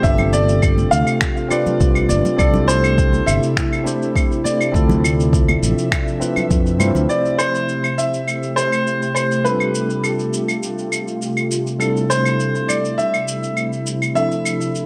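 A straight 4/4 groove of gritty, sampler-style cabasa, claves and finger snaps carries this wistful, relaxed sunset chillout excerpt, where a deep, overdriven electronic kick drops out at 6.6 seconds and punchy fingered electric bass and soft, high-tuned congas stop at 7.1 seconds, just as a filter sweep begins on the ethereal, detuned pad's sustained chords beneath a clean tine electric piano and a boxy, up-front grand piano melody with delay, the whole set in a moderate room reverb.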